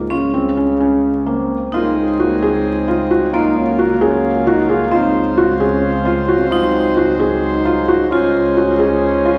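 A breathy, dark solo trombone with light vibrato opens this restless, playful piece of contemporary chamber music in 7/8 alongside a bright, ringing vibraphone on a close, dry second line and a bowed double bass holding a pure, floating low Db, and a felt-muted upright piano joins at once with intimate, mellow arpeggios that sound soft and thick. At 1.7 seconds a reedy pedal harmonium enters with breathing sustained chords as the harmony moves among major-seventh and minor-seventh colours over that steady bass. A generous scoring-stage reverb and a layer of vinyl crackle frame this short cut from a longer work.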